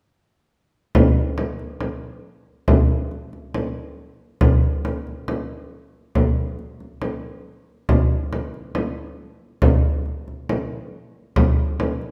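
A deep, large-sounding acoustic frame drum enters at 0.9 seconds, played with soft hands and placed up front, carrying this Mongolian traditional passage in free time with a galloping, proud mood. The drum has a small-room character of its own, while a wet recital-hall reverb surrounds the whole recording. The drum continues until 12.1 seconds in this piece cut from a longer performance.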